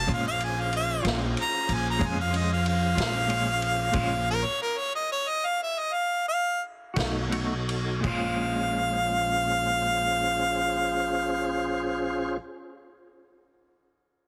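Set in a straight 12/8 lilt, this mournful, smoky slow blues is cut from a longer piece and heard through light reverb and a heavily compressed radio sound. Up front, a clear harmonica carries a jazz-style solo with light vibrato, soft attacks and scooped notes, while a tonewheel organ holds full, lightly overdriven chords through a slow rotary speaker and chorus vibrato. A woody, growly pizzicato upright bass anchors the bottom, and a fingered, clean electric guitar with tremolo sits in the background. A gritty vintage kit with dark cymbals and a tight kick plays until 8.2 seconds, and the music slows from 2.6 to 8.0 seconds as the harmonica solo draws to a close.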